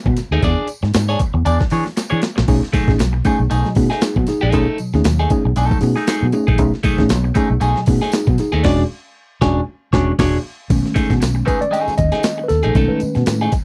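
Funk with a playful, dry, close 1970s-style studio sound, where gritty, overdriven breakbeat drums with a thumpy kick and a round, foam-muted fingered bass sit up front beneath a slightly broken-up phaser guitar and a jingly tambourine in the background, while a worn, slightly out-of-tune tine electric piano enters with stabs at 2.5 seconds, joins a band accent at 8.6 seconds and takes a mellow solo from 10.7 seconds.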